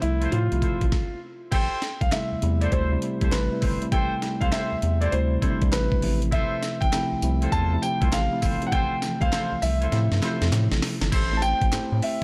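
A dark production with light reverb carries this slick, confident new jack swing excerpt, where a mellow vintage baby grand piano sings the tape-echoed melody over worn, slightly out-of-tune tine electric piano chords, a round, deep analog bass and a gritty, compressed breakbeat kit with a thumpy kick and high-tuned snare up front, while a soft-attack horn section adds jazz-style stabs with light vibrato, very quiet, crisp group handclaps join at 2.1 seconds, and the groove breaks for a brief stop at 0.9 seconds before a drum fill at 9.9 seconds.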